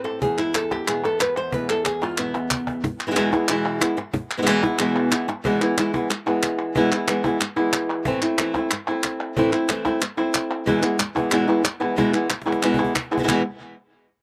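Crisp palmas and a woody, close cajon with faint snares drive a straight, brisk four-beat pulse through this passionate, fiery flamenco cut from a longer piece. Up front, a bright, fingerpicked flamenco guitar carries the melody, and a second, warm flamenco guitar adds stabs from the background. Both guitars show finger squeak. The opening bars feature a nylon-string guitar solo with a drum fill before the stabs stop at 2.8 seconds. The lead guitar continues over the hand claps and cajon as the harmony moves from E to A minor at 8.1 seconds and back to E. Another drum fill comes near the end, and the passage closes on an E5 chord in a dry, open-air sound with little reverb.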